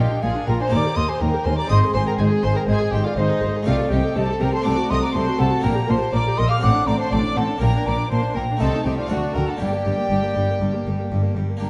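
A baroque flute with a wooden, pure tone, vibrato and a soft attack carries the melody from the first beat, alongside a violin section on the melody, a rich-toned second violin section on a second line, a viola section in accompaniment and a bright, plucked harpsichord. Beneath them, a dark cello section sits in the background with a double bass section, all of these strings bowed in period style with gut-string tone and light vibrato. This driving, dramatic baroque-style concerto passage runs at 122 BPM in straight 4/4, settling into G minor from 3.7 s, with a warm production set in a moderate recital hall reverb.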